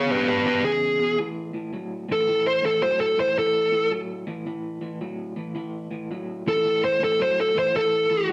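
Blues at 110 BPM in 4/4 with a swung eighth-note feel, soulful and laid-back, cut from a longer piece. A dark, overdriven lead guitar sits up front with slapback echo, soloing a melody between G4 and C#5 for the full 8.3 seconds. Beneath it, a slightly broken-up, compressed guitar through a small old amp picks a low riff with tremolo, moving from E to A5 at 1.2 seconds, all in a rough rehearsal-room recording with moderate stone room reverb.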